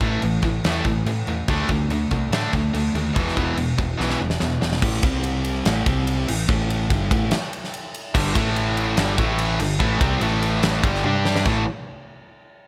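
Menacing and driving, this hard rock passage is cut from a longer piece and moves in a straight 4/4 with a heavy, insistent push. An overdriven semi-hollow guitar with a picked, warm tone plays the riff throughout, doubled by a bright, tight distorted guitar that sits up front but drops out at 4.8 seconds and returns at 8.1 seconds. Underneath, a dark, round hollow-body short-scale bass played with the fingers gives an amped, punchy low end. The huge arena drum kit sounds acoustic and mid-forward in a big room, with a fat snare, a punchy kick, crash and ride cymbals and toms, and it marks the close with a fill at 11.1 seconds. The riff moves through A5, D5 and E5 power chords before settling into a restless shuttle between A5, C5 and G5, all set in a studio ambience.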